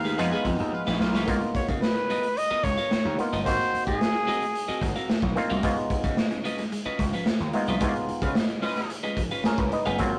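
Gritty and funky, this rough rehearsal-room funk fragment has a close-miked trumpet with light vibrato carrying the melody until 4.9 s over overdriven slap bass, a garage drum kit with a punchy kick and a dark, rolled-off top, stringy auto-wah clav stabs through a combo amp, and two slightly broken-up electric guitars, one compressed and picked for accompaniment and the other playing a very quiet, twangy fingered riff. A distant, roomy horn section adds a brief second line near the start and again at 8.2 s, band accents mark the opening and return from 7.8 s, and a clav fill at 9.2 s rounds it off.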